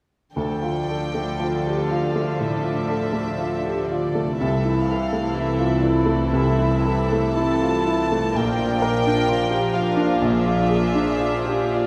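A clear, present grand piano leads this brooding, passionate romantic movement for piano and orchestra, carrying the melody up front in a rubato feel over D minor, A minor over C and B-flat major chords. Behind it, an intimate chamber violin section with light vibrato sings a high melody, a pure, floating second violin section drifts at a distance, a close viola section fills out the accompaniment, and bowed cello and double bass sections, smooth-topped and soft in attack, anchor the bass, the cellos sitting in the background. All the strings play sul tasto, and the ensemble is heard from further back in a wet concert hall in this fragment cut from a longer piece, which runs to about 11.9 seconds.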